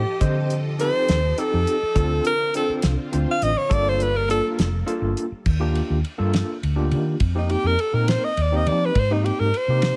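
A studio reverb surrounds this short excerpt of electric jazz fusion, a funky, driving passage in 6/8 at 69 BPM counted in dotted quarters, tuned slightly below standard pitch. Up front, a breathy alto saxophone takes the solo in a jazz style, its subtone carrying a light vibrato and scooped notes; it plays from the start to 4.5 seconds, then returns at 7.4 seconds. Beneath it, a hollow-body short-scale electric bass played with the fingers gives a round, amped low end, while a damped 70s acoustic drum kit sounds dry and dark, with a fat snare, a tight kick, a rolled-off top and hi-hat, ride and crash cymbals. An overdriven tine electric piano, gritty and barky through a combo amp, adds accompaniment with fast tremolo and lush chorus. In the background, a vintage sawtooth string machine with a sub octave holds slow-attack chords under ensemble chorus until 5.4 seconds. The harmony moves from F9 through Dm7 and Gm9 to Ebmaj7, F7sus4 and Abmaj9 across two repeated sections.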